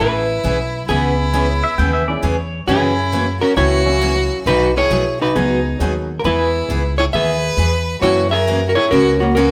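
Down-home and playful, this swung country western swing excerpt at 135 BPM in E major features a dark, clean hollow-body jazz guitar carrying the melody up front, with a clear, focused fiddle as a second line, a bright picked steel-string acoustic guitar as accompaniment alongside a woody upright piano in the background, a thumpy pizzicato upright bass, and a brief pedal steel guitar phrase with volume swells from 1.6 to 2.6 seconds, all played live in a stone room with moderate reverb over chords moving from E6 through C#m7, F#7 and B6.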